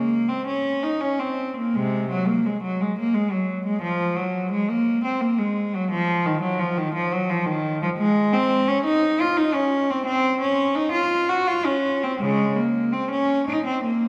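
Solemn and grave, this short passage from a baroque-style suite movement for unaccompanied cello moves in a flexible, rubato three-four. A single bowed cello carries the whole 14.1 seconds alone, ranging from C3 up to Gb4. Its gut-string tone is rich and reedy, shaded with light vibrato in a period style, and it sits up front in the mix. Around it hangs a long, wet church reverb that lends the listener a sense of hearing from further back in the room. Tuned a touch below modern pitch at A4 = 439 Hz, the fragment is taken from a longer piece.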